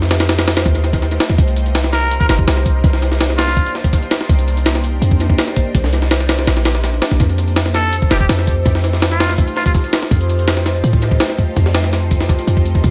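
Atmospheric and raw, this drum and bass cut with a jungle lean runs at 165 BPM in a straight 4/4, drawn from a longer piece. A sampler-style breakbeat kit drives the whole passage from the start, compressed, pitched up and gritty, with a thumpy kick, a high-tuned snare and hi-hat sitting up front, dressed in studio reverb and analog delay. Beneath it, a deep 808-style bass plays throughout between F1 and A2, boomy and sine-based with a noise layer, a fast attack and a decaying, mellow tail. A trumpet with a straight mute appears twice, from 1.9 to 3.7 seconds and again from 7.7 seconds, playing jazz-style solo lines between F4 and Bb4 that sound nasal and raspy with light vibrato, growling edges and a smooth top, trailed by dub echo and set lower in the mix. The harmony moves from F9 to Cm9 and back to F9 at 7.2 seconds, all within an echo-heavy mix with light reverb.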